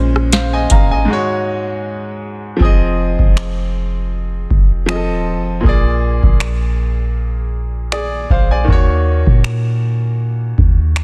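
A clear, boxy grand piano and a round, dark 808-style bass open this moody, longing contemporary R&B passage with a light swing, joined at 0.2 seconds by a dry, booming analog drum machine whose deep kick, tonal snare with soft clipping, metallic hi-hat, rim clicks and finger snaps sit up front. A break runs from 1.1 seconds before the second section arrives at 2.6 seconds in a dense, heavily limited mix with little reverb.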